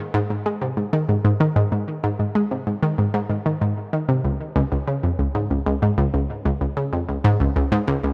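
An analog pluck synthesizer opens this ambient fragment at 0.1 s and carries it as the sole voice until the clip ends at 8.1 s. The mood is luminous and expansive, set at a steady 95 BPM in 4/4 with a straight feel. The pluck sits in a low-to-middle register, from Db2 to Ab3, and its tone is round yet bright, built from detuned sawtooth and pulse waves with a noise layer underneath. Each note has a fast attack and short decay shaped by a filter pluck, while chorus and tape echo thicken and extend the sound. Placed up front in the mix, the synth is wrapped in a light reverb that gives the piece a gentle sense of space, and the recording is cut from a longer work.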